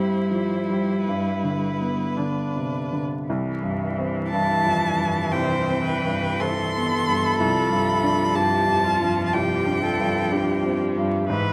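A rich, smooth violin carries the melody up front, singing with even vibrato across a range from B4 to C6 before it drops out at 10.8 seconds. This is a slow, lyrical and tender romantic movement for piano quartet in C major, moving at roughly 51-64 BPM in 4/4 with a flexible, rubato feel, heard as a short cut from a longer piece. Beneath the violin, a clear baby grand piano sits up front with an open tone and long sustain, its accompaniment reaching from C2 to D4, while a clear viola adds bowed accompaniment in the middle register. A focused cello traces a second line low in the texture, all three playing through to 11.5 seconds. The harmony drifts gently from C/G to G, settles on C at 3.3 seconds, and leans into G7/C later on. Close, detailed microphones capture the quartet in a moderate recital hall reverb, with vinyl crackle lending an aged patina.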